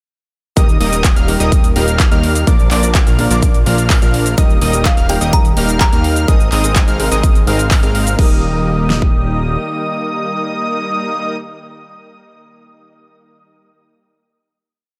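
Drenched in digital ambience, this euphoric, triumphant festival progressive house piece in Eb major at 126 BPM opens straight into a drop, with punchy overdriven four-on-the-floor kick, a huge snare, metallic hats, claps, shaker and crash driving under a fat, detuned analog bass, dotted-rhythm supersaw stab chords with a cassette-tape tint, a bold sawtooth unison lead arpeggiating high above, a warm grand piano tucked in the background, and a lush, warbling pad, while a woody kalimba motif appears from 4.4 to 7.7 seconds before the drums drop out and the piece resolves onto a final Eb chord from 8.2 seconds.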